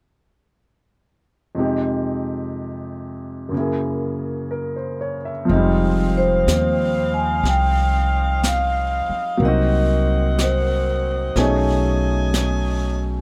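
A clear, intimate upright piano opens this smoky, wistful jazz ballad in F minor at 61 BPM with a swung feel, its woody tone and audible action noise sitting up front with a long sustain before the rest of the band joins at 5.5 seconds. There, a pizzicato upright bass with a warm, woody sound, a brushed kit with a high-tuned snare and hi-hat, and a loose, bright saxophone section holding sustained chords with vibrato all come in, and a mellow vibraphone with soft mallets, motor off, takes the melody from 6.2 seconds with a ringing, metallic tone. The close, detailed recording carries little reverb, and this cut from a longer piece moves from Fm9 and Gb9 through Fm7 and Cm7b5 to B13.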